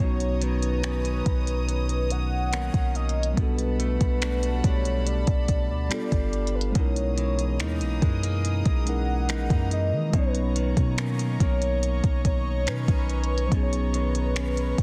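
A gritty, vintage-sampled R&B drum kit of finger snaps, smooth hi-hat, soft kick and a softly clipped snare sits up front with a deep, boomy 808-style bass beneath a velvety, detuned synth lead melody with chorus and tape echo, a mellow tine electric piano, clean direct-recorded guitar arpeggios and reedy, gut-toned bowed strings, in a tender, smooth contemporary R&B fragment with a dry, dense, heavily limited modern sound.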